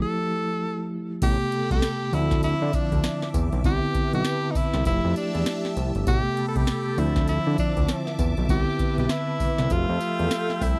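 Punchy and slick, this excerpt from a longer new jack swing piece moves at 99 BPM in 4/4 with a 61% swing on the sixteenths, cycling through rich ninth chords from Fmaj9 through Am9, Dm9 and Cmaj9. It opens with a brief break of just the edgy tenor saxophone and the mellow tine electric piano, the sax singing a jazz-style solo line with vibrato and scooped notes up front while the clean keys comp alongside, heard as if through built-in speakers. At 1.2 seconds the booming analog drum machine arrives with a deep kick, crisp snare, metallic hi-hats, tambourine and crash, alongside a fat, detuned sawtooth bass with a fast attack and a filter sweep. A swirling, evolving pad joins at 1.5 seconds, its slow-attack chords colored by phaser and chorus and sitting low behind the other parts. The bass and drums sit loudest, giving the groove weight under the forceful sax. The sound is dry and close, like a 1970s-style studio recording with little reverb.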